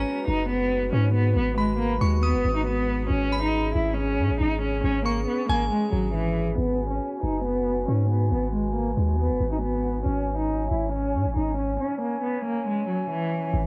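A dark, ominous half-time hip hop excerpt at 138 BPM in G# minor opens with an intimate, vibrato-laden bowed cello melody, dulled by tape and a low-pass filter, over a deep, mellow 808-style bass and ethereal glass harmonica chords. A crystalline FM synth bell with chorus, phaser and analog delay traces a bright second line until 5.7 s. From 6.6 s a filter sweep runs to 13.5 s, while the home cassette recording keeps a light reverb and a hazy, lo-fi character.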